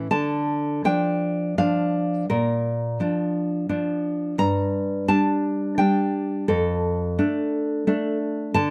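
A solo nylon-string guitar opens this short romantic piece, fingerpicked in a classical style and placed up front in an intimate, wistful setting. The music moves in 3/4 at about 85 BPM, though the rubato feel lets the pulse breathe and stretch. In D minor, the harmony passes from Dm to Bb, then to Gm at 4.4 seconds, and settles on Dm/F at 6.5 seconds. The guitar ranges from F2 up to Bb5, spanning both low and high registers across the brief passage. A light reverb and a dark, warm production lend the acoustic tone a soft, close glow across its 8.7 seconds, cut from a longer piece.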